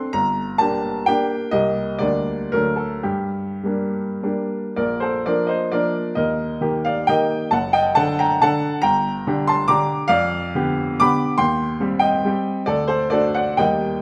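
Romantic classical piano music: a triple-time dance in 3/4 and G minor with dotted rhythms, its pulse pushed and pulled by rubato so the tempo ranges across 94-155 BPM. The mood is capricious and nostalgic. A baby grand plays solo throughout, spanning F#1 to D6, with a bright, brilliant and open tone placed up front. The opening phrase circles G minor through C minor seventh and D, and at 4.8 s a new passage turns toward B-flat and E-flat before moving through G7 over F and C minor to settle on D at 12.7 s. A moderate recital hall reverb lends space to this short passage, cut from a longer piece.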